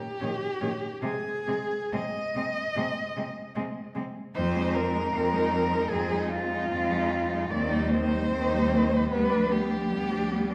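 A single dark-toned cello opens this solemn, yearning classical fragment, singing the melody at 0.0 seconds, close and up front, with expressive vibrato and portamento. A moment later, at 0.2 seconds, three more bowed cellos join to form a small ensemble. One plays a second line in the background with a rich tone and its own vibrato and portamento, and another adds a sombre accompaniment in the middle register. The bass cello sits prominently beneath them, focused and smooth on top with vibrato. The music moves at around 75 BPM in 4/4 but breathes freely in rubato, passing through harmonies such as Eb/Bb, Ab/C, Fm7 and Cm/Eb before resting on G7/D. The ensemble is heard from further back in a reverberant recital hall, giving the sound a spacious glow, and the passage is cut from a longer piece.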